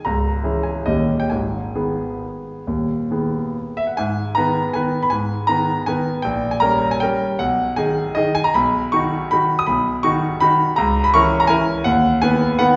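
A bright concert grand piano carries this short classical waltz on its own, its tone brilliant and polished, with a deep bass and a present, up-front sound that ranges from C#1 to D#6. The mood is graceful and elegant, set in G# minor and 3/4 time, with a rubato feel that lets the tempo move between about 130 and 173 BPM. The opening phrase runs to 4.0 seconds, moving through C#m and D#7 to settle on G#m, before a second passage takes over for the remaining time. That later passage colours the key with diminished chords such as Gdim/Bb and A#dim/C#, leaning toward B major before closing on B/D# at 11.9 seconds. The piano's short sustain is set inside the generous reverb of a recital hall, giving the notes a lingering church-like bloom. The 12.8-second passage is cut from a longer piece.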